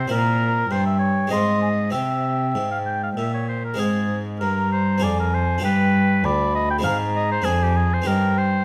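All four voices sound together from the opening moment of this short passage cut from a longer baroque-style sonata movement with continuo. The mood is introspective and grave, in an unhurried 3/4 at 98 BPM with a straight feel and the tuning pitched at A4 = 439 Hz. An up-front oboe carries the solo melody with a smooth top and light vibrato, while a baroque flute, pure and woody with a soft attack, sits above it on a second line. Beneath them, a bowed cello, played by one player and miked close, gives a rich, reedy gut-string bass that stands out as the most prominent part. A brilliant Italian-style harpsichord with plucked octave strings fills in the accompaniment. The harmony moves through darkening shades such as Fm, G7 and Dm7b5/F before settling on Cm/G, captured with close, detailed microphones and light reverb.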